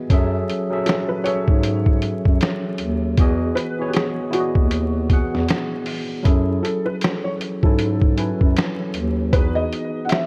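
A worn, slightly out-of-tune tine electric piano opens this nostalgic, hazy lo-fi hip hop excerpt, joined almost at once by a compressed, pitched-down sampler-style kit of thumpy kick, snare, hi-hat and finger snaps with a swung feel, and a dark, distant bass clarinet playing with jazz vibrato over F#m9 and Emaj9 chords. At 0.9 seconds a soft, felt-muted upright piano enters with the melody, its mellow, intimate tone carrying audible action noise through analog chorus, tape echo and a low-pass filter. The dreamy mix is soaked in plate reverb and dusted with vinyl crackle.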